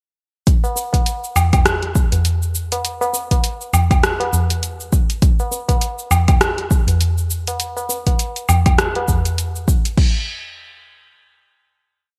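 A swung sixteenth-note groove in 4/4 drives this short, mystical and hypnotic downtempo piece, built on a deep, soft, tape-warm electronic kick and a tape-warm, layered deep house kit of closed hi-hat, cabasa, low woodblock, rim click and crash, with gated reverb on the kit. Low-tuned, ringing tabla sits close and up front, sounding its tin, na and ge strokes from 0.6 to 9.2 seconds. The groove runs until 10.0 seconds and gives way to a final hit, all framed by light reverb, digital ambience and a bright 1980s-style digital production.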